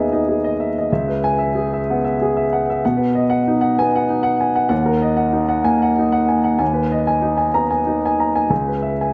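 A dark grand piano plays alone from the first moment, opening this intimate yet hopeful fragment of a longer neoclassical minimalist piece in a rubato three-time. Its mellow, boxy tone sits up front with long sustain and audible action noise, touched by a slapback echo and set in a moderate studio ambience. The harmony moves from G#m/D# through C#m7, B and D#m before circling back to G#m/D# and C#m7 as the fragment breaks off at 9.1 seconds.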